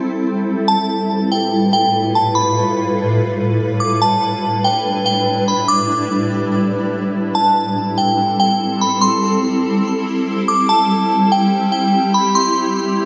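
Hip hop at 144 BPM with a half-time feel in A minor, this hazy, ethereal fragment sets a cloudy, detuned granular pad holding sustained chords from Am7 through G13/A and Em7/A beneath a crystalline FM bell melody that enters at 0.7 seconds, its glassy tone colored by chorus, phaser and digital delay, all bathed in a lush 2.4-second hall reverb.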